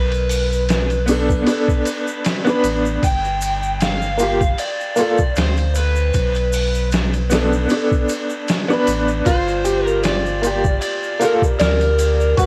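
A clear, woody upright piano sits up front from 1.1 s to 11.4 s, its vintage tone shimmering with tremolo and a cassette-tape sheen. This brooding, melancholic trip hop excerpt moves at 77 BPM in 4/4 with a light 16th-note swing, alternating between Bm7 and Gm7. Above it, an overdriven electric slide guitar carries the melody, fingered and soaked in dub echo. Underneath, a round sine sub bass holds a deep, mellow foundation beside a gritty, pitched-down sampler-style drum kit with a thumpy kick, a medium-tuned snare, hi-hat and ride. Egg shaker and triangle tick away in the background with a band-limited, acoustic character. At 9.3 s a soft, felt-muted upright piano enters with intimate arpeggios, its action noise audible through dub echo, while light reverb, a home-cassette feel and vinyl crackle give the whole piece its worn, hazy atmosphere.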